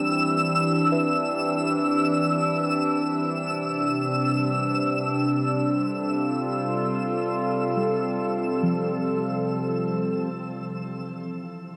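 Drenched in a huge, wet reverb and softened by a cassette-tape haze, this weightless ambient excerpt drifts at 70 BPM in C major, moving from Cmaj9 to Fadd9/C before settling on a plain C chord at 10.3 seconds. Up front, a warbling, nostalgic pad holds mellow sustained chords with chorus and shimmer reverb, alongside a twinkling granular texture whose octave-up shimmer sparkles high above. Further back, muted, felt-like synth keys fade in with dark, intimate arpeggios through chorus and delay, dropping out at 10.5 seconds as the pad rings on alone until 11.8 seconds.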